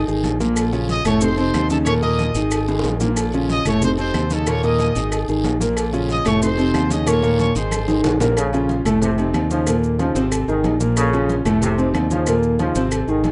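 An up-front, clear grand piano with deep bass anchors the accompaniment of this driving, fiery salsa in Bb minor at 184 BPM, over a bright, direct fingered electric bass and a busy percussion bed of close, grainy maracas, very quiet damped congas, and background cowbell and bongos, ringing timbales and agogo bells, woody claves and a raspy guiro. A present trumpet section with vibrato carries the melody until 8.0 s, and a punchy, vintage trombone section takes up a second line from 8.4 s, with drum fills along the way. The sound is a rough demo-style mix with a small room's reverb.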